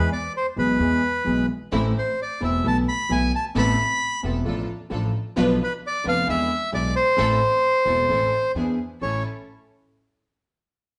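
Rubato 4/4 tango at 132 BPM in A harmonic minor, dramatic and tense, with a reedy, dark bandoneon carrying the melody up front over an intimate vintage grand piano with audible action noise and woody, thumpy pizzicato upright bass on gut strings, while a lush bowed string section with vibrato adds stabs from 1.7 seconds, all played live in one room with a wet reverb through this short cut from a longer piece.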